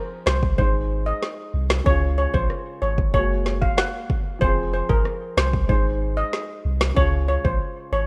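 A shimmering steel pan carries the melody up front, its bright, metallic notes ringing over a short dancehall groove that feels hypnotic and tough. A dark baby grand piano opens the cut alone before the other parts arrive at 0.3 seconds, offering boxy, intimate accompaniment with audible action noise and short sustain. Beneath it, a punchy sub bass with a pitch-drop attack sits up front, deep and mellow like a sine tone. The electronic afro-pop drum kit pairs a deep kick with a woody snare and rim clicks, overdriven and roughened with vintage 12-bit sampler grit, and it drops out at 7.6 seconds while the others carry on to the end. The harmony circles through minor and major chords, including a Gbadd9, and light digital reverb frames a rough home-demo mix in this brief passage taken from a longer piece.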